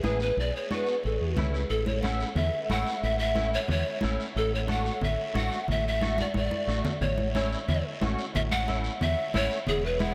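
Drenched in a huge, echoing reverb that suggests a vast space, this joyful, festive cumbia moves at a brisk 181 BPM in A major. A breathy bamboo pan flute with chiff and vibrato carries the melody up front over a bright, twangy clean electric guitar with ensemble chorus, a dark, punchy fingered bass, close ringing congas and a distant, raspy guiro. The harmony moves from Bm to A and D/A, with a drum fill at 6.2 seconds before the return to A.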